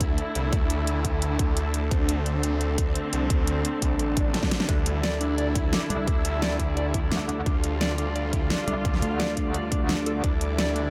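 A mix with light reverb carries this futuristic, aggressive dark technical drum and bass excerpt at 173 BPM in D minor, built on a Dmadd9 chord, with an electronic kick and a dubstep kit's huge snare and hi-hat driving from the start while a snarling, growling distorted saw bass pumps underneath. Lush bowed strings hold sustained chords and an airy, breathy pad drifts in the background, both breathing with sidechain pumping. A background swell and drum fill arrive around 4.1 to 4.7 seconds, after which a dark, clean, fingered electric guitar plays arpeggios through spring reverb and digital delay, and a metallic FM wobble bass joins at 5.9 seconds.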